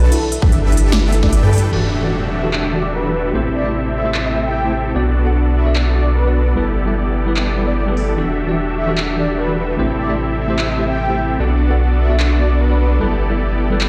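A half-time 4/4 pulse at 149 BPM drives this lush, bright future bass passage in G major, cut from a longer piece, opening on a drop where a punchy electronic kick and a soft, round pluck playing dark arpeggios drop away by 1.7 s, while a tape-tinged dance kit of snare, crisp hats, handclaps and crash carries on through low-pass filtering. A huge, detuned supersaw riff and a deep, saturated sub bass sit up front and pump against the beat, as a breathy, flute-like lead with chorus, vibrato and delay sings the melody. From 1.7 s a clean tine electric piano with dub echo comps through an Em11, Am7, Bm7, G69 cycle, a background downlifter sweeps by in the following seconds, and the whole mix plays in a big, reverberant room.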